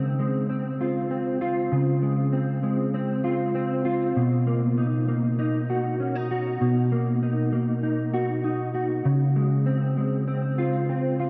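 In a straight 4/4 pulse, this blissful, dreamy dream pop fragment from a longer piece features a lone mellow electric guitar, dark, clean and fingered, sitting up front through ensemble chorus and tape echo and playing from 0.0 to 11.3 seconds over Dbmaj7, Cbmaj7 and back to Dbmaj7, all bathed in a huge ambient reverb with a 6.5-second tail and a soft, rolled-off top end.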